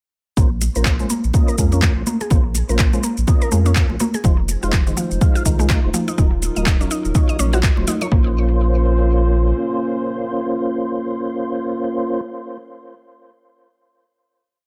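Over a four-on-the-floor, overdriven electronic kick at 124 BPM with swung 16ths, plus overdriven shaker and handclaps and close, dry congas ringing in the background, this spiritual, earthy afro house piece in Bb minor sets a round sine sub bass in a dotted rhythm beneath a woody, FM-style mallet pluck sequence under a filter sweep and mellow tonewheel organ stabs with key click and slow rotary, while a moody, detuned analog pad enters at 4.2 seconds and sustains with the organ through a final Bbmadd9 chord from 8.1 seconds, the two parts ringing out until 12.2 seconds.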